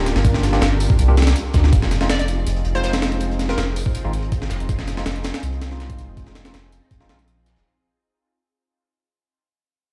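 Compressed, thumpy sampler-style breakbeat drums with a high-tuned snare drive this frenetic, raw drum and bass and jungle excerpt at 162 BPM, joined by a very quiet, dark crunchy breakbeat kit, a deep, round dub sub bass with tube saturation, gritty overdriven tine electric piano stabs with dub echo, silky phased string machine chords in the background, and a hollow, detuned square pluck melody with lush chorus from 2.1 to 3.8 s, while the mix carries stone room reverb and vinyl crackle as if played on a big sound system in a bare room, moving from Gm7 to Fm7 as the drop fades out from 1.7 s.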